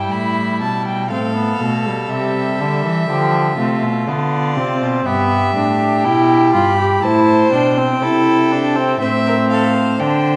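Set in a steady, straight 4/4 at 61 BPM, this baroque-style fugue for string quartet moves with a joyful, elegant poise, and the passage is cut from a longer piece. Every player uses gut strings in period style, each bowed by a single musician with a reedy edge. The first violin carries the melody high between D5 and B5 with a light vibrato. The second violin's close, airy second line sits below it from E4 to C5. The viola, nasal and up front, fills in the accompaniment from F3 to G4, while the cello anchors the bass between G2 and E3. All four parts play together from 0.0 to 10.4 seconds in a wet recital-hall reverb, passing through Em/G, F/A, Bdim, a return to Em/G, and Am.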